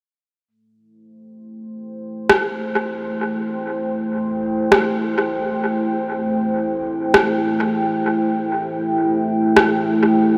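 A deep, dark ambient pad carries this excerpt from a longer ambient dub piece, fading in to hold sustained chords from 1.5 seconds, with a single Am7 coloring its slow-attack, long-release sound. Its detuned sawtooth and sine layers, thickened in unison with a sub octave and softened by chorus and its own reverb, give it a moody, mellow weight up front in the mix. An electronic rim click enters at 2.3 seconds and sits forward too, its produced tone trailing into studio reverb and dub echo. The music moves in free time in A minor, tuned to A4 = 441 Hz, and the whole space is drenched in a huge, wet ambient reverb with a 6.7-second decay. The result is spacious and meditative, a slow drift of dark harmony punctuated by echoing clicks.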